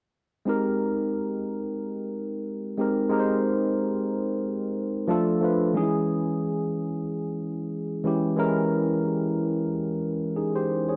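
R&B at 91 BPM in Ab major with a sensual, soulful, swung 16th feel, this short excerpt features a lone electric piano, barky and clean through a combo amp with analog chorus, sitting up front from 0.5 to 11.0 seconds as it voices Abmaj9, Dm and Dbm chords in a dry, close 1970s-style studio sound with light reverb.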